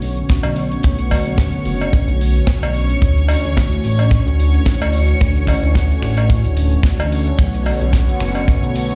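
Nu-disco at 110 BPM in B minor, this groovy, sensual excerpt rides a lightly swung sixteenth-note feel in 4/4, cut from a longer piece. A glossy, retro synth bass sits up front, mixing pulse-wave and sawtooth tones with a filter pluck and chorus, while a tight, polished kick enters at 0.3 seconds and anchors the groove. A dry, airy funk kit adds finger snaps, hi-hat and a high-tuned snare, and a vintage, band-limited cowbell part with maracas and group handclaps joins at 0.4 seconds. Underneath, a smooth, detuned analog pad with slow attack, chorus and tape echo carries a filter sweep throughout and pumps with sidechain compression. Above it, a lush string machine with ensemble chorus holds bright, sustained chords high in the register, also pumping. The harmony moves from Bm9 to Dmaj9 at 3.0 seconds and back to Bm9, all set in the echoing stone-room reverb of a big sound system in a bare space.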